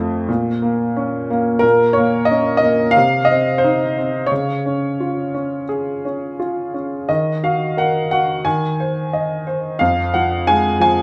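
A clear, woody upright piano sits up front from the first moment, playing a lyrical classical passage alone with a rubato feel and long, smooth sustain across a range from F2 to Ab5. The bittersweet, brooding harmony moves from Bbm through Cmadd11, Db, Ebm and Ab/Eb before settling on Fm near 9.8 seconds. A moderate recital hall reverb surrounds the vintage tone in this 11-second fragment cut from a longer piece.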